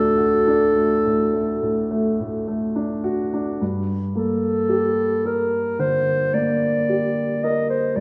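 Unhurried and freely pulsed, this short cut from a longer piece moves in a slow four with an elastic, rubato feel that lets each phrase breathe. It is a romantic classical duo for clarinet and grand piano, melancholic and elegiac in mood. The clarinet carries the melody throughout, its dark, soft-attacked tone sitting up front in a narrow middle register. Beneath it, a baby grand piano supplies the accompaniment from deep bass up to the clarinet's lower edge, its mellow, vintage character and long sustain giving the harmony a smooth, shadowed glow. The harmony rests on D before settling onto G minor at 3.6 seconds, where the music turns into a second section. Both instruments are heard close yet bathed in a generous, wet reverb that evokes a church or concert hall, its tail hanging for nearly two seconds.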